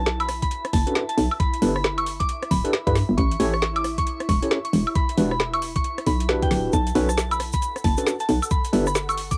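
UK garage in a bouncy, late-night two-step mood, this short cut from a longer piece swings its sixteenths over chords moving from B7 through G69, A7, Em9 and Bm9. A hollow, punchy FM bass knocks up front from the start, joined by an overdriven garage kit with a woody snare, metallic hats, rim clicks and woodblock, and an electronic kick that lands at 0.4 seconds. Above them, a soft, pure synth bell carries the melody with a gentle warbling, vintage character, chorus and tape echo. A bright, clean tine electric piano adds stabs through tape echo from 0.9 seconds, while an ethereal, airy pad of detuned saw and triangle voices sits mellow in the background, pumping with sidechain under ensemble chorus and reverb. A grainy, close egg shaker slips in at 6.7 seconds. The whole recording has a home-cassette feel, with light reverb and vinyl crackle.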